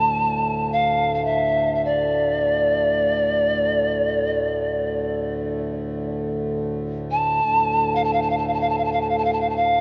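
Unmeasured and free in time, this short cut from a longer piece unfolds as spacious, meditative world music in D hirajoshi. A polished pan flute carries the melody between D5 and A5 across the full 9.8 seconds, its woody, airy tone marked by vibrato, a soft attack and an expressive, up-front presence. Beneath it, a pedal harmonium holds a low drone from D2 to A2 for the same span, sounding reedy, mellow and breathing. A huge, wet ambient reverb with an 8.6-second decay opens up the space. A cassette-tape character colours the sound, lending the meditation a hazy, lived-in feel.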